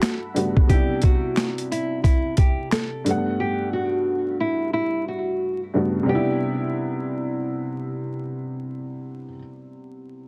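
Vinyl crackle and light reverb surround a dense, heavily limited master in this soulful boom-bap hip-hop fragment, cut from a longer piece and moving at 89 BPM in 4/4 with a swung sixteenth-note feel in C lydian. Up front, a gritty, pitched-down sampler-style kit with a thumpy kick, high-tuned snare, hi-hat and handclaps carries the groove until 3.2 seconds. A dark upright piano with a woody, boxy, slightly detuned character, audible action noise and a worn cassette-tape colour plays the accompaniment through to 10.3 seconds. A small, fingerpicked nylon-string guitar carries the melody with digital delay and plate reverb, stopping at 8.1 seconds. Briefly at the start, a lush, thick unison pad built from detuned sawtooth and square waves sits in the background with a slow attack, chorus and phaser. The harmony moves between Gmaj9 and Cmaj9, with a new section arriving on Cmaj9.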